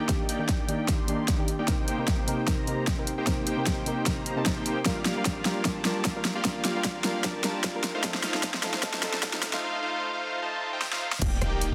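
Future bass at 151 BPM in a half-time feel with a light swing on the sixteenths, this lush, bright build-up is cut from a longer piece and moves through Ebmaj7, Cm7, Gm7 and F7 before landing back on Ebmaj7. A big, fat polysynth carries the riff up front, its detuned sawtooth tone warbling with vintage 12-bit grit, sidechain pumping and dub echo while a filter sweep runs across it. Beneath it, a soft, round pluck supplies accompaniment with a dark, gentle edge, thickened by chorus and echo until it drops out at 9.4 seconds. An overdriven big-room kit with a huge snare, hi-hat, rim click and crash sits forward alongside a punchy layered electronic kick, rolling through drum fills as the section builds. A very quiet riser leads to an impact at 11.2 seconds, where a deep, boomy 808-style bass arrives on a low Eb. A lush hall reverb surrounds the dense, heavily limited master.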